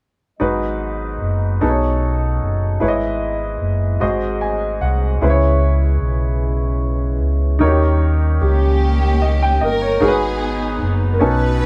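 Captured as a band playing together in one room with moderate reverb, this soulful, fervent gospel excerpt moves slowly at 50 BPM in 6/8, in G# minor, with chords such as G#m7, B13 and D#7. A round, amped fingered electric bass sits up front beside a clear, woody upright piano that plays a fill at 4.0 s, while a distant, roomy French horn section holds dark sustained chords in the background until 10.0 s. At 8.4 s the melody enters on a mellow grand piano, set back in the mix, and a lush, bowed symphonic string section with expressive vibrato and a soft attack.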